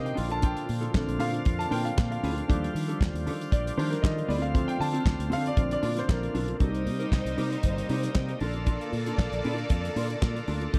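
A warm grand piano takes a solo across the first 6.6 seconds of this glamorous, sultry disco excerpt, sitting up front in a straight 4/4 groove at 117 BPM over chords moving from Bbmaj7 through Ebmaj9#11 and Dm7. Beneath it, a damped 70s drum kit with a fat snare, tight kick, hi-hat and handclaps drives the beat alongside a round, foam-muted fingered electric bass that sounds dark and direct. A mellow, clean electric guitar adds compressed accompaniment, while a bright tonewheel organ holds sustained chords with light overdrive and a slow rotary speaker, giving it a shouting, full character. When the piano stops at 6.6 seconds, a lush, clear studio string section enters with a close, bowed second line full of vibrato, carrying the passage over Cm7 and back to Bbmaj7. The whole track sits in light reverb with a small room ambience.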